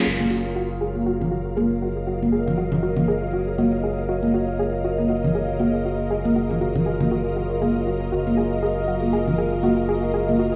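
Deep house at 119 BPM in F# major, relaxed and swung, this short excerpt rests on a single F#maj9 chord for about 10.6 seconds. A warbly, nostalgic tape-like pad holds sustained chords with chorus and built-in reverb, and an ethereal, airy pad adds texture through ensemble chorus and built-in reverb, while a soft, round pluck plays arpeggios through chorus and dub echo, with a filter sweep running across its sound. Underneath, a deep analog bass holds F#1 and damped, high-tuned congas with thick skins sit forward through dub echo, all in an echo-heavy mix with a moderate echo-chamber reverb.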